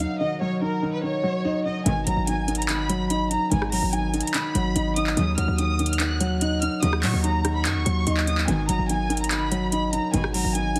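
This half-time trap groove at 145 BPM in 4/4 rides on a trap drum kit of handclaps, rim clicks and metallic hi-hats with an electronic, tape-warm character, while a punchy, heavy 808-style bass with a fast attack and decaying sine tone anchors the low end. Set in G# minor with a melancholic, eerie mood, this cut from a longer hip hop piece moves between D#m7 and G#m7 chords. A lush symphonic violin section carries the melody high above, bowed with vibrato and a smooth, focused top, softened by a low-pass filter and trailed by digital delay. Beneath it, a dark, worn baby grand piano plays accompaniment up front, its boxy, intimate tone filtered and marked by audible action noise. From 1.9 s a very quiet symphonic string section adds soft-attack, expressive stabs until 10.3 s, all set in a small room with light reverb and a heavily compressed, radio-like sound.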